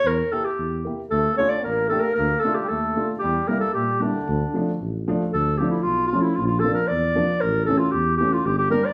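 Soulful and bittersweet, this klezmer fragment in D harmonic minor moves in a straight 2/4 at about 114 BPM and gradually speeds up over its short span. A dark, classical-style clarinet carries the melody up front, with a mellow, woody upright piano accompanying; the piano's vintage character comes with audible action noise. Underneath, a tuba plays a jazz-style bass line with light vibrato and a smooth top end. A raspy, growling trombone adds a pop-style second line from 1.1 to 4.8 seconds, its gritty tone marked by vibrato, and both brass parts scoop into their notes. The chords circle between E diminished and D minor before the passage turns toward B-flat around 6.4 seconds and A around 7.4 seconds, all heard as a band playing live together in a large studio with a wet reverb.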